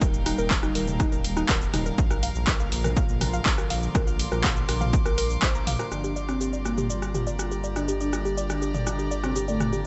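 Over a straight 4/4 pulse at 122 BPM, this dark, cinematic melodic techno excerpt in G minor pairs a punchy, overdriven kick, which drops out at 5.5 seconds, with an analog drum machine of handclaps, hi-hat, rim click, shaker and toms beneath a rumbling, detuned saw bass, woody wave-folded pluck arpeggios with tape echo, an evolving wavetable pad, a reedy period-style chamber string section and a very quiet swarming drone, all pumping against the kick except the drone, until at 5.9 seconds a fat analog lead and an eerie, inharmonic synth bell enter in the background under filter sweeps as the harmony moves from Eb and Bb to Gm7.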